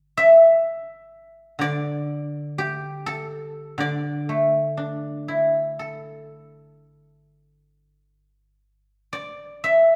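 A solo guzheng, plucked with fingerpicks and sitting up front, opens this elegant, serene excerpt of Chinese traditional music with silvery, ringing tones spanning D3 to E5, moving in a free rubato around 56-63 BPM in 4/4 under light reverb, with a new section arriving at 8.1 seconds before the guzheng stops at 10.0 seconds.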